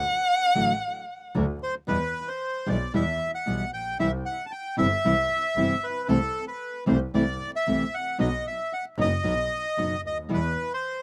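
Dry, open-air sound with vinyl crackle frames this tense, sultry rubato tango fragment, which opens on a dark, expressive bowed violin with vibrato and portamento before an up-front, reedy bandoneon takes the melody at 1.6 seconds over fingerpicked classical nylon-string guitar with audible finger squeak and a clear, smooth-topped bowed double bass touched with light vibrato, the harmony moving from Em through C and Am/C to B.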